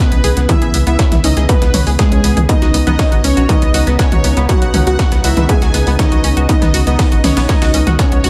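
A thick, bold unison lead carries the melody from the start of this cinematic, driving melodic techno piece at 120 BPM, its tape echo trailing over a smooth supersaw second line, a warbling, resonant pad holding C#m7 and Badd9 chords in the background, and tight, detuned arpeggios, all but the lead pumping to the sidechain. A dark, punchy sequencer bass arrives at 0.1 seconds with a tape-warm analog drum machine playing hi-hat and toms, joined at 0.2 seconds by a very quiet, gritty sampler-style kit of hi-hat and snare. A distorted, overdriven kick enters up front at 0.5 seconds, the whole sitting in light digital ambience.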